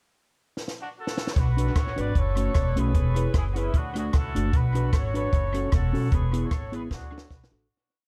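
A short ska piece with an energetic, mischievous mood opens at 0.6 seconds with a fill on a compact cocktail drum kit, its high-tuned snare and punchy kick sounding dry and up front. A clear horn section joins almost at once over a pickup bar, playing a tight, vintage-flavored pop melody built from short song-like motifs, partly doubled in thirds, with a light vibrato and a touch of tape echo. At 1.4 seconds the head begins: the drums settle into a ska beat with a side-stick backbeat and an upright bass walks underneath with a woody pizzicato tone from steel strings. Moments later, at 1.6 seconds, a dark, clean electric guitar adds a fingered off-beat chop. The harmony cycles through Bm, F#m, E and D with a gentle swing, and the room sound stays close and intimate. A fade-out starting at 6.1 seconds carries the piece through a final drum fill to its close.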